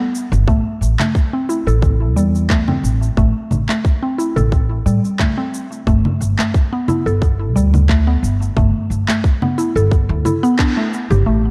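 A round, mellow, mallet-like synth pluck stands up front from the opening second, spinning hypnotic arpeggios through chorus, delay and a cassette-tape haze. This organic downtempo excerpt, cut from a longer piece, moves at 89 BPM in 4/4 with a light 16th-note swing, and its mystical mood rests on a slow shift from Am to G. A woody, pizzicato upright bass with steel strings sits warmly up front, while a tight electronic kick, re-recorded in a large room, joins at 0.5 seconds. Around them, a layered deep house kit of cabasa, congas, handclaps and metallic hi-hats is overdriven and low-pass filtered, tucked lower in the mix. The dark production carries light reverb, and the band lands a brief accent at 10.6 seconds before the excerpt cuts away.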